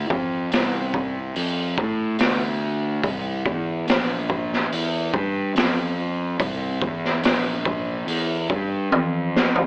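A growly, fuzz-drenched fingered electric bass sits up front from the start, joined at 0.1 seconds by a gritty, boomy-kicked garage drum kit with a high-tuned snare, its hi-hat, kick, snare and toms rolling into a fill at 8.9 seconds, in a brooding, hypnotic stoner and doom metal excerpt at 72 BPM in 4/4, heard dry through an AM radio tone.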